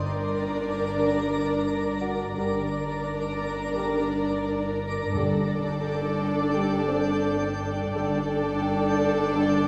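In a straight 4/4 pulse, this tense, uneasy cinematic excerpt holds a hushed, suspended atmosphere. Violin sections carry the melody and a second line with soft, floating sul tasto bowing. A dark, lush viola section and bowed cellos and double basses fill out the harmony and the low end, the basses sounding woody. A twinkling granular texture sustains chords with an octave-up shimmer, and a very quiet, bell-like celesta adds delicate sparkle. French horns and a clear trombone section enter at 1.0 s with sustained chords in the background. At 5.1 s the harmony shifts and round, soft-mallet timpani sound briefly, all set back in a reverberant scoring-stage space.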